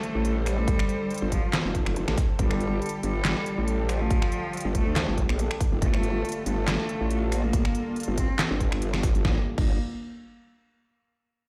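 Heard through a big sound system in a bare stone room, this aggressive, chaotic cut of heavy wobble dubstep rides a swung half-time groove, with a punchy electronic kick entering at 0.7 s and an up-front drum kit of deep snare, crisp hats, crash cymbal, finger snaps and handclaps. A saturated, wobbling growl bass with overdrive and chorus dominates beneath a focused, bowed cello melody with vibrato and delay, while a lush, detuned sawtooth unison pad with phaser and sidechain pumping hangs in the background. The drop runs until 9.2 s, capped by a band accent at 8.9 s, after which the chords fall away.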